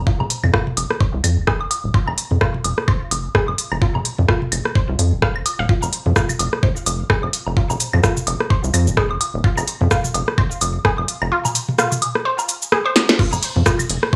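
A swung 128 BPM minimal techno groove in 4/4 and F minor sets a cool, quirky mood, built on a knocking, up-front electronic kick, a clicky kit of tiny snare, hats, rim clicks, shaker and cymbals, and overdriven analog toms and woodblock with tape echo, while a rubbery, hollow square bass pumps under the sidechain and a squelchy, warbling resonant blip pluck riff rides a phaser and tape echo, all in a dry, gritty hardware sound with light reverb, until a drum fill at 13.0 seconds and a band accent at 13.1 seconds close this cut from a longer piece.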